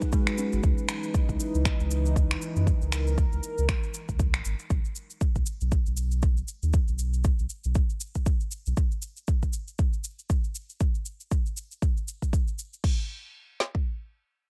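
A driving, warm afro house groove in 4/4 moves with a swung sixteenth-note feel, built on an up-front deep house kit with a deep kick and a woody snare. A second, quieter layer of the kit adds crash cymbal, finger snaps and shaker. A round, sine-based sub bass with a fast attack sits prominently beneath, with sidechain pumping, from 0.5 seconds until 8.7 seconds. At the start, a dark, smooth pad with detuned sawtooth tones, a sub octave, a slow attack and chorus holds sustained G#m7 and C#m9 chords, also pumping, until it stops at 4.7 seconds and the harmony drops out. A brief, close-miked kalimba arpeggio of short thumbnail plucks flickers in the background near the very beginning, low-pass filtered and echoed by delay. Little reverb colours the mix, so this cut from a longer track sounds close.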